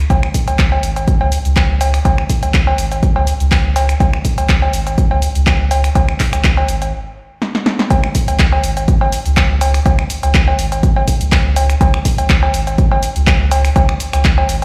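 The sound is mostly dry yet carries the stony echo of a big sound system played in a bare room, giving this gritty, trippy acid house cut from a longer track a raw edge. At 123 BPM in 4/4 with a light swing on the sixteenths, a punchy analog electronic kick drives the groove, its tape-warm thump re-recorded in a small room. Up front, an analog drum machine adds a punchy snare, handclaps, hi-hat, finger snaps, cabasa and cowbell, with a short room around the snare, clap and hats. Beneath them, a deep, thick, saturated triangle-wave sub bass moves between G#1 and C#2 with a fast attack and sustained notes, pumping under sidechain compression. The groove stops at 6.9 seconds, a drum fill enters at 7.4 seconds, and the drop lands at 7.9 seconds to carry the second section through to the end.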